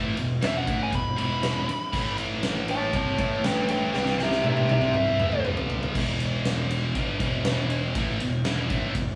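Recorded as a band playing live in one room, this cut from a longer hard rock piece carries moderate studio reverb and a natural sense of space. At a straight 120 BPM in 4/4, the mood is energetic and anthemic, with the harmony moving from E5 through Aadd9, C5, A5 and G5 before landing back on E5. A double-tracked, scooped high-gain rhythm guitar drives the riff up front with a bright, distorted edge, while a fuzz-laden picked bass adds round, punchy low end. The huge arena drum kit sounds acoustic and big-roomed, with a fat snare, punchy kick, crash and ride cymbals and toms, and it plays a fill from 3.9 s. Entering at 0.5 s, a dark, bluesy overdriven lead guitar sits forward in the mix and solos high above the band until 5.4 s, shortly before the music shifts into a new section at 6.0 s.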